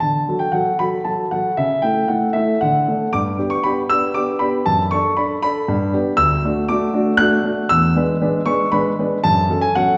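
A graceful, cheerful classical-period piano sonatina excerpt in D major, moving at 117 BPM in 3/4 with a rubato feel, played by a solo concert grand piano with a dark, mellow tone and deep bass that spans D2 to F#6 and moves from D through G and E7 to close on F#m at 9.2 seconds, heard from further back in a recital hall whose wet reverb lingers around the notes.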